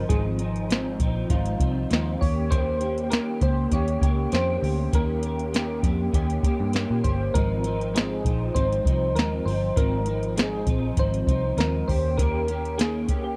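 Soft, electric-piano-like synth keys open this laid-back, hazy bedroom-pop excerpt, joined at once by an electric guitar through a small old amp and a muted, picked vintage bass, with a soft vintage rhythm box arriving at 0.1 seconds. The keys carry the melody in a mellow, rounded tone with a fast attack and decaying notes, colored by tremolo, analog chorus, a filter sweep and a slapback echo. Up front, the guitar provides slightly broken-up, compressed accompaniment, its ensemble chorus and warbly pitch drift adding to the woozy atmosphere. Underneath, the bass sounds dark and foam-muted, while the analog drum machine offers a deep kick, a tonal snare and metallic hi-hats with a tape-warm character, all in a gently swung 4/4 groove. The harmony moves unhurriedly between a sixth chord and a dominant seventh, and the close, dry 1970s-style studio sound keeps every part intimate, with little reverb.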